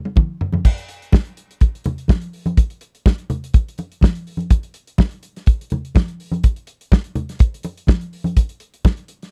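Disco at 124 BPM in a straight 4/4, driving and glamorous, this short cut from a longer piece opens with a drum fill before the groove settles in at 0.7 seconds. A soul drum kit sits up front with a tight kick, medium-tuned snare, dark cymbals across crash and hi-hat, and toms, its top end rolled off, while softly played congas add a bright, thin-skinned tone at a lower level. The sound is a dry, close 1970s-style studio recording with little reverb.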